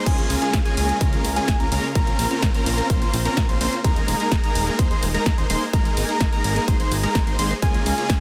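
Anthemic and triumphant, this festival progressive house excerpt sets a huge, bright supersaw chord riff with delay over a fat, evolving analog bass and a punchy, up-front kick, while a dark, bold unison lead plays delayed arpeggios, a lush chorused pad sustains chords in the background, a tape-warm house kit adds a crash, hi-hat, ride and punchy snare, and sidechain pumping runs through the pad, lead, chords and bass as the harmony moves from Db6 through Bbmadd9, Ebsus4 and Absus2 under a dense, heavily limited master.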